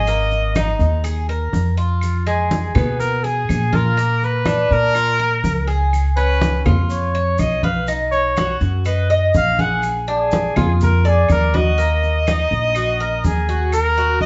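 A solo trumpet, a Cuban tres and an upright bass start together in this nostalgic Cuban son and guajira passage, cut from a longer piece, with congas and maracas joining at 0.1 seconds. The trumpet carries the melody up front, its tone warm and punchy with vibrato in a pop style, though it sounds distant and roomy. Beneath it the tres plays picked arpeggios on double strings, mellow yet metallic, some of them octave-doubled, while the pizzicato bass sits prominently with a dark, thumpy gut-string woodiness. The congas ring close and low-tuned, the grainy maracas stay in the background, and very quiet claves add a woody click from 0.6 seconds. The band plays live in one large studio room with moderate reverb and a softened top end, moving through chords such as Absus2, Fdim, Db and Bb7 before settling on Ebm.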